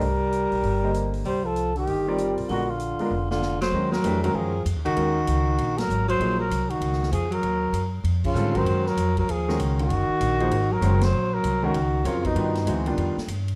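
Modal jazz at a brisk 194 BPM with a spiritual, hypnotic swing, this excerpt sets a dark, breathy trumpet melody with vibrato and scooped notes over a close-miked tenor saxophone second line, a woody pizzicato upright bass, a clear baby grand piano entering at 0.8 s, and a punchy big-room drum kit whose fill at 3.1 s leads the shift from C dorian to Eb dorian at 3.7 s, with band accents punctuating the moderate studio reverb.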